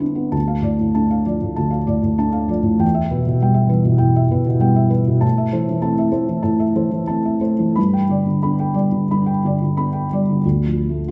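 In a rubato 4/4 moving between 87 and 101 BPM, this intimate, wistful neoclassical minimalist piano fragment in D dorian, tuned to A4 = 441 Hz, features a solo felt-muted upright piano, dark and mellow with thick felt and placed up front, spanning D2 to B5 through Dm, Em, Am and G before returning to Dm at 10.4 seconds, set in a wet recital hall reverb with a 1.6-second decay.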